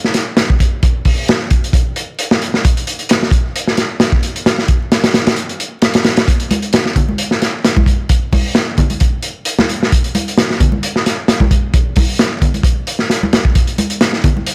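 A gritty, saturated breakbeat drum kit sits up front with a tight kick, medium-tuned snare and hi-hat under a rolled-off top, driving a raw, funky groove at 132 BPM with a light swing on the 16ths, while close, dry, ringing congas join at 6.5 seconds in a small-room excerpt laced with vinyl crackle.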